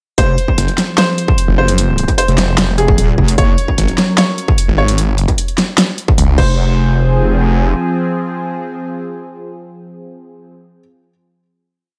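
A menacing, aggressive heavy wobble dubstep piece opens straight into its drop: a clear baby grand piano plays a repeating riff with digital delay over a half-time beat of distorted kick, huge snare, bright closed hats and crashes, while a saturated, square-wave wobble bass sits heavy and up front. Moments later a snarling saw bass joins with growling, chopped phrases shaped by a moving notch, and a lush unison pad fades in with sustained chords coloured by chorus, phaser and sidechain pumping. The harmony moves from F minor to G flat at 3.4 seconds before settling back on F minor. The drums and the saw bass drop out around 6.5 seconds, and the wobble bass returns for one short phrase as the piece lands on its final hit. The bright pad and the piano riff carry on to the close, all in a tight, nearly dry mix.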